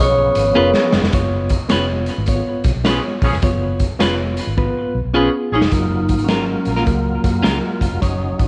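Uplifting and danceable, this swung slice of 1960s-style soul is cut from a longer piece. A vibraphone with medium hard mallets carries the ringing, metallic melody, joined briefly at the start by a bell-like glockenspiel in the background, while a reedy electric piano with fast tremolo plays accompaniment throughout and a smooth tonewheel organ with key click and chorus vibrato holds sustained chords. A foam-muted, round fingered electric bass anchors the low end beneath a gritty, saturated garage drum kit that sits up front with a punchy kick and fills leading into new sections. A clean, compressed electric guitar adds stabs with tape echo, and a distant, roomy horn section brings a mellow second line from 2.9 to 5.6 seconds. The vibraphone returns at 5.2 seconds, shortly before the harmony settles on F#maj7 at 5.7 seconds, all in light reverb.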